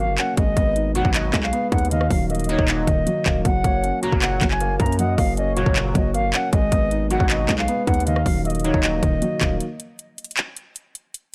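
A dry, gritty sound with little reverb frames this dreamy, wistful trap cut, taken from a longer piece and moving at 156 BPM in a half-time 4/4 feel. A reedy, airy silver concert flute carries the melody with a straight, tongued tone, while a felt-muted upright piano gives soft, intimate accompaniment beneath it. A distorted 808-style bass adds heavy, saturated weight with a fast attack and decaying notes, and an overdriven trap kit sits up front with a hard-clipped kick, metallic hi-hats, handclaps and rim clicks. Farther back, a gliding portamento lead traces a smooth second line with chorus, vibrato and analog delay, and a resonant polysynth supplies juicy, detuned stabs shaped by a filter sweep. The harmony cycles through G#m7, D#m and F#, and by 9.6 seconds the other parts have dropped away, leaving the drums alone for a short break that runs until 11.3 seconds.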